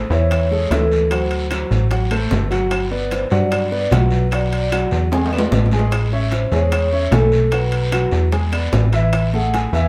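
A mellow vibraphone played with soft mallets carries the solo melody throughout this lively, danceable Afro-Cuban jazz excerpt, its ringing tone colored by slow motor vibrato and a slapback echo. A concert grand piano with deep bass supplies the accompaniment, while a punchy, funky analog bass sits up front. The percussion includes round, low-tuned bongos in the background, metal-shell timbales, a raspy guiro and very quiet woody claves, with a drum fill from 5.1 to 5.9 seconds, and the band is heard from further back in a club with wet reverb.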